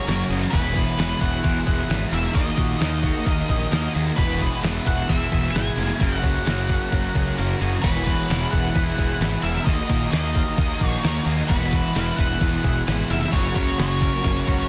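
A dense, heavily limited modern master with little reverb carries this hazy, wistful shoegaze and dream pop excerpt in E lydian at 131 BPM, built on a looping F#, Eadd9, D#m, Eadd9 progression. An up-front, thumpy detuned 8-bit drum machine and a jingly, very quiet tambourine play alongside a fuzz fingered bass, while a dark, thick fuzz guitar and two biting overdriven guitars stack riffs in the background, one of them double-tracked and very quiet, the other trailed by reverse reverb. Above them, an octave-fuzz lead guitar sings the melody through slapback echo, a twangy, compressed clean guitar plays arpeggios in lush chorus, a pure, bright organ-like pad holds sustained chords, and the kick and snare drop out briefly from 7.4 to 7.8 seconds.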